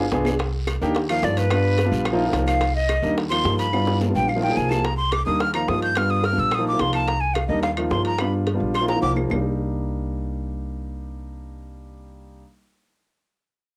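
Fiery and sultry, this short cut from a longer Afro-Cuban jazz piece moves at a brisk 215 BPM in a straight 4/4, set in C minor. A concert grand piano and a pizzicato upright bass sit up front and carry the harmony throughout, cycling through Cm7, Ebsus2, G7 and Bbsus4; the piano is open with deep lows and long sustain, while the steel-strung bass is thumpy and woody. From 1.1 seconds a breathy, bright metal jazz flute takes the solo, its crisp attack, chiff and vibrato riding high over the band. Behind it, tight high-tuned bongos, ringing metal-shell timbales and compressed, saturated claves keep a background pulse with brief drum fills, joined early on by a raspy guiro. The percussion drops away at 9.4 seconds, leaving piano and bass to finish the passage, all in a moderately reverberant, cassette-tinged home recording that gives the piano and flute a slightly worn tape colour.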